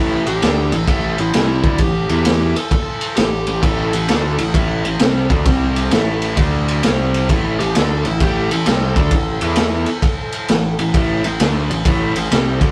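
A bright, scooped, double-tracked overdriven guitar riff and a growling, overdriven picked bass kick off this swaggering, driving excerpt of swung blues rock and southern rock at 131 BPM, joined at 0.3 seconds by a raw, gritty garage drum kit with a boomy kick, dark cymbals and a pumping small-room sound up front, and by a fingerpicked overdriven slide guitar melody that drops out at 4.5 seconds and returns at 7.6 seconds, all over A5, E5, C5 and D5 power chords in a rough rehearsal-room recording.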